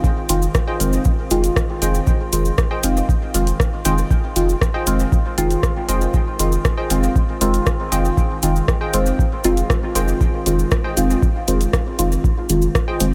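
A dub techno excerpt with a cavernous, hypnotic mood, set in a straight 4/4 pulse and resting on a single Fm7 chord throughout. A deep, mellow chord stab opens the piece up front, its soft, detuned tone coloured by chorus, phaser, ring modulation and a moving notch, pumping against the kick and trailing into dub echo. An electronic kick with a tape-warm, deep thump anchors the groove alongside a grainy, bright cabasa played close, while a booming analog drum machine adds metallic hi-hats and rim clicks echoing in a small room. A round sine sub bass holding F1 joins at 0.3 seconds, sustained and pumping under the drums. From 0.7 seconds a crisp, full-bodied wavetable chord stab sits higher and quieter in the mix, its dark filter pluck decaying into dub echo. Light reverb and digital ambience frame this short excerpt from a longer piece.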